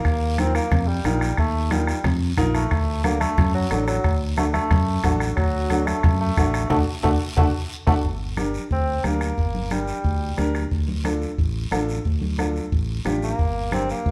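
Heard from further back in a moderately reverberant studio, this fiery, driving cumbia excerpt in G minor moves at 180 BPM in a straight 4/4. A classical-style bassoon with light vibrato carries the solo line over the band, falling silent at 10.5 seconds and returning at 13.2 seconds. Beneath it, a bright, growly fingered electric bass holds the low end, while a woody, short-sustain upright piano supplies the accompaniment. The bombo, struck with a soft beater, drives the groove alongside ringing, medium-tuned congas played with soft hands in the background, and a raspy guiro sits close and dry. The harmony shifts from Ebsus2 to D, then settles into Gm and Dm after a band accent at 6.7 seconds and a drum fill.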